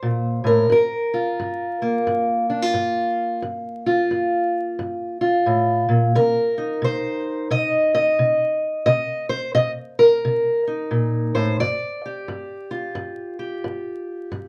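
Smoky and mournful, this short cut from a longer acoustic country blues piece moves at an unhurried 88 BPM in 4/4, its eighth notes carrying a loose swing in G minor. A lone fingerpicked steel-string acoustic guitar carries the whole passage from 0.0 to 14.5 seconds, its parlour-sized body giving a dark, boxy tone that sits up front. The harmony drifts from a brief A minor into Gm7 at 0.7 seconds, settles on Cm7 at 6.1 seconds, and lands on a bare G5 at 11.6 seconds. The guitar ranges from G2 up to Eb5, filling the low end and reaching into a higher register. A moderate small-room ambience places the listener a little further back, and a layer of vinyl crackle lends the sound an aged, intimate patina.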